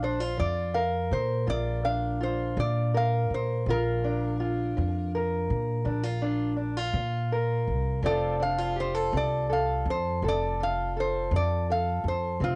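A home cassette recording with light reverb catches a laid-back, swaggering acoustic country blues at 55 BPM in 12/8, where a metallic, nasal resonator slide guitar picked with fingerpicks carries the melody up front, a dark, boxy parlour steel-string guitar fingerpicks the accompaniment, and a woody, thumpy upright bass with gut strings plays pizzicato underneath, all three sounding together throughout this short cut from a longer piece as the harmony moves from Bb to F at 8.0 seconds.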